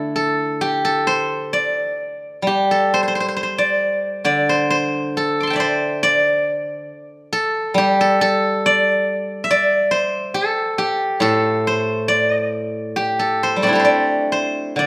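Rubato and unevenly paced, this short cut from a longer traditional Chinese piece features a solo steel-string zither played with fingerpicks, its silvery, ringing, mellow tone sitting up front in light reverb and spanning a broad range from low to high for a pastoral, elegant mood.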